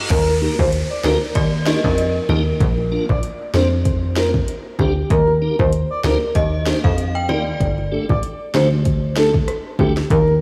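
A swung dancehall groove at 96 BPM in 4/4 rolls under this summery, sunny fragment, driven by an up-front, electronic afro-pop drum kit with a deep kick, sharp snare, rim click, metallic hats and crash cymbal. A punchy, funky analog bass sits just as far forward, its wave-folded filter plucks snapping with a fast attack and decaying, while soft, low-tuned bongos add round, close hand tones at a very quiet level. A breathy, flute-like synth lead carries the melody with a soft attack and sustained notes, colored by chorus, vibrato and analog delay. Beneath it, a lightly overdriven tonewheel organ supplies piping, scooped chords with audible key click, chorus vibrato and a slow rotary speaker, and from 1.4 to 7.9 seconds an inharmonic FM chime rings out with a long release through ensemble chorus and delay. A reverse cymbal and downlifter sweep through the opening 5.1 seconds over chords moving from Eb to Bb and back, landing on Gsus2, and a lush hall reverb soaks the mix in a dreamy haze.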